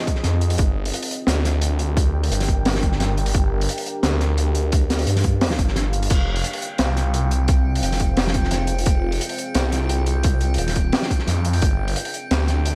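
The recording sounds heavy and tense, with the drums and bass pushed up front in this slice of half-time drum and bass set in a studio ambience. A hard-clipped electronic kick joins a crunchy breakbeat kit, whose high-tuned snare, dark cymbals and hi-hat come across saturated and gritty with a rolled-off top. Beneath them, a thick, detuned sawtooth bass with a fast attack swirls through its phaser while the harmony shifts between Fm and Gm. A deep, moody pad holds sustained chords with a slow attack, chorus, reverb and sidechain pumping. At 6.7 seconds an eerie, metallic drone with an inharmonic FM tone enters softly in the background, lending a mellow, unsettling shimmer until the end.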